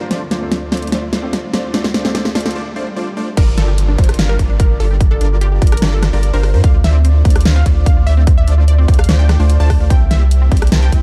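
A dark, digitally ambient future bass passage in D minor at 147 BPM with a half-time feel and an emotional, dreamy mood opens on a muffled felt-muted upright piano with dub echo and an airy breathy pad, both pumping under sidechain, beneath a detuned supersaw stab riff with a low-pass filter, a lush unison pluck arpeggio, faint risers, swells and downlifters, and a big-room dance kit with a huge snare, rim clicks, hi-hats and crashes building through a drum fill and a short break, until the drop at 3.4 s brings in a thick saturated sub bass, a punchy up-front electronic kick, a very quiet unison pluck melody with tape echo, and a soft vibrato-laden dreamy lead with chorus and dub echo, all moving over Dm7, Gm7 and C7.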